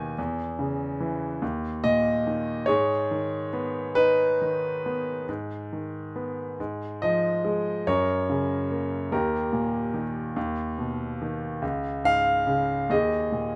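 A clear, natural-sounding grand piano sits up front with long sustain, playing a wistful, dark classical solo in 6/8 with free rubato, spanning C#2 to G#5 in light reverb, its opening phrase giving way to a new section at 5.3 s in this passage cut from a longer piece.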